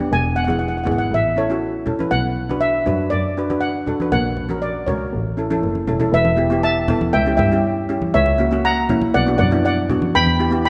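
A straight 4/4 calypso groove at 120 BPM in B minor drives this intense, dramatic excerpt. A mellow lead pan played with soft rubber sticks carries the melody up front, while a bright, close-miked, dry double-seconds pan struck with hard rubber sticks fills out the harmony. Beneath them, a dark, veiled, bowed double bass plays con sordino with light vibrato, and soft-handed, ringing congas sit in the background from 0.5 seconds. A drum fill at 5.6 seconds leads into a second section that moves through diminished and dominant chords, all set in a moderate concert hall reverb.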